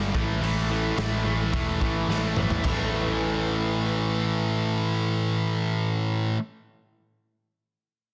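A straight 4/4 hard rock groove at 108 BPM drives this menacing, aggressive excerpt, with a raw garage drum kit of punchy kick, medium-tuned snare, hi-hat, crash and toms, sounding gritty and saturated with a rolled-off top, playing until 2.8 seconds after a fill from 2.1 seconds. A high-gain distorted guitar and an overdriven semi-hollow guitar sit up front playing a low riff between G2 and A3 over an A5 chord, while a picked, foam-muted electric bass adds a round, dark bottom. The dense, heavily limited mix carries a small room ambience, and the short clip is cut from a longer piece.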